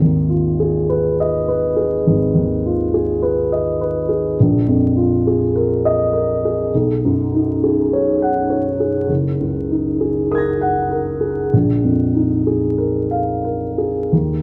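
A lone baby grand piano, close and natural with a long sustain, opens this nocturnal, hazy fragment of impressionist classical solo piano, drifting in rubato 4/4 at roughly 42-52 BPM across a span from Gb1 to Bb6 through harmonies of Abm6, Bb7sus4, B69 and Gb69, all set in a moderate recital-hall reverb beneath a veil of vinyl crackle.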